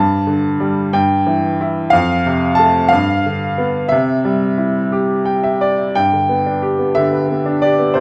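A bright, woody upright piano opens alone, up front and natural in tone, with long sustain ringing into a moderate recital-hall reverb. This is a tender, calm passage of lyrical classical solo piano, cut from a longer piece. It moves at 60 beats per minute in dotted quarters in 6/8, with a gently rubato feel in C major. The harmony passes from Em/G through F and G7 to a resting C chord at 3.9 s, and the piano adds a brilliant fill from 4.9 to 6.0 s. A new section begins at 6.0 s on G, with the piano spanning F2 to A5 against a dark, warm production.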